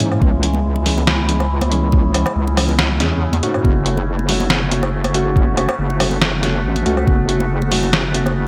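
A half-time groove at 140 BPM in 4/4, with a light 53% swing on the sixteenths, drives this meditative, heavy deep dubstep passage cut from a longer piece. A muffled, pitched-down, sampler-style kit of hi-hat, medium-tuned snare and woodblock sits up front with gated reverb. A compressed, thumpy electronic kick runs from 0.2 to 7.2 seconds, while very quiet, high-tuned acoustic congas play close and dry with hard hands. Underneath, a detuned square-and-sine wobble bass holds heavy, sustained notes with chorus, moving from C#m to F#m at 3.6 seconds. A dark, hollow organ stab decays through lush chorus and dub echo, and a resonant sawtooth drone with sweeping overtones and 12-bit sampler grit swells in slowly alongside it. The mix has a bright 1980s-style digital sheen in a light, ambient space.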